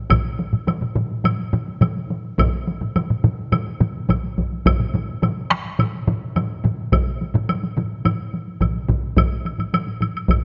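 Close, detailed microphones in a moderate concert hall with a 1.8-second reverb frame this powerful, ceremonial Japanese traditional taiko passage at 106 BPM in a straight 4/4, where one solo taiko part struck with hard sticks sounds compressed and saturated, a second solo taiko part played with heavy sticks sits up front with a small-room character, two heavy-stick taiko ensemble parts sound close and dry in the background with one stopping at 9.0 seconds, and a close, woody woodblock plays throughout.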